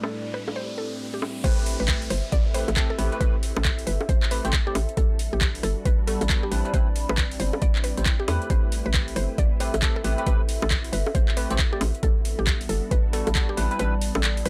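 A dry, gritty recording with transformer saturation carries this late-night, skippy two-step UK garage cut, taken from a longer piece. Riser and downlifter effects open over a woody, mallet-like synth pluck melody, a silky string machine and a nostalgic, warbly tape-like pad, both pumping under sidechain, plus an overdriven garage kit of bongos, handclaps, rim clicks, metallic hi-hats and crash under low-pass filters. The drop at 1.4 seconds brings in a hollow, punchy FM bass, an overdriven knocking kick and bell-like electric piano stabs with analog delay, moving through Am9, Gmaj9 and Cmaj7 until the kick drops out at 13.8 seconds.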